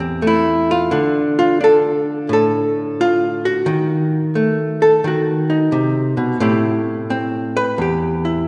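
Late-night and cool, this brief solo jazz excerpt swings gently in 4/4 with a lone archtop guitar, clean, dark and up front in its hollow-body electric tone, picking through Am7, Dm, D#dim7 and back to Am7 from 0.0 to 8.5 s, its notes blooming into the long, wet reverb of a concert hall.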